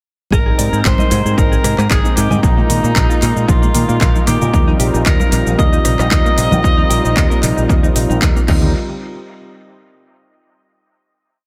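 A groovy, feel-good nu-disco piece in Eb major at 114 BPM drops straight in at 0.3 seconds, with a punchy four-on-the-floor electronic kick, a house kit of clap, rim click, shaker, hi-hat and crash, soft-handed congas, and a bright, octave-jumping fingered bass through an envelope filter. Over a smooth, detuned analog pad with sidechain pumping that holds Abmaj9, Bb7sus4 and Eb69 chords, a very quiet analog pluck runs an eight-step arpeggio, and a clean, direct electric guitar repeats a sixteen-step riff in the background under lush chorus and tape echo. A breathy, whispered tenor saxophone carries a motif-based melody with vibrato and scooped notes trailing dub echo, and the piece closes on a final hit at 8.7 seconds in an echo-heavy mix.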